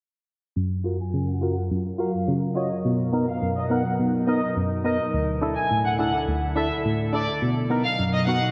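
A hollow, dark percussive organ stab opens this sunny, summery dancehall excerpt at 105 BPM in 4/4 with a straight feel. It enters at 0.6 seconds with fast-attack, decaying hits softened by chorus and a low-pass filter. A glassy, ethereal FM pad with a vintage, warbling character follows at 0.8 seconds, holding mellow sustained chords through ensemble chorus and its own reverb. From 1.0 seconds a studio violin section carries the melody in a high register, bowed with vibrato and an expressive soft attack, its tone lush yet distant under a diffuse ambient delay. The harmony moves from F#maj7 to Bmaj7, then Dsus2 and back to Bmaj7, while a filter sweep runs across the whole passage. A long hall reverb soaks the mix, giving it a dreamy glow.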